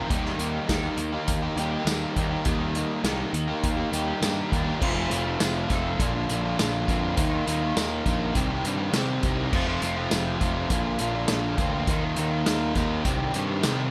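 A straight 4/4 pulse at 102 BPM drives this carefree, wistful indie rock clip, cut from a longer piece, where an up-front acoustic vintage drum kit with a punchy kick, medium-tuned snare, dark cymbals, hi-hat, crash, tambourine and a pumping small-room sound sits beside a fuzzy, overdriven picked electric bass, while a crunchy, warm overdriven guitar riff leads up front and a bright, raw garage guitar with overdrive, analog chorus and analog delay plays its own riff in the background, the dry mix moving at 4.8 s from an Eb chord into a cycle of F6, Bbadd9, Ebsus2 and Cm.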